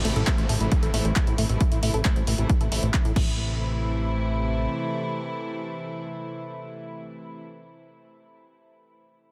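A detuned unison pluck plays mellow background arpeggios under a filter sweep, alongside a downlifter and an overdriven drum machine of crash, handclaps and hi-hat, as a punchy kick joins at 0.3 s and a funky sawtooth bass and distant, floating strings pump to the sidechain in this driving, soaring uplifting trance excerpt at 135 BPM in A minor, where the strings hold their sustained chords alone until 7.4 s after the rest drop away.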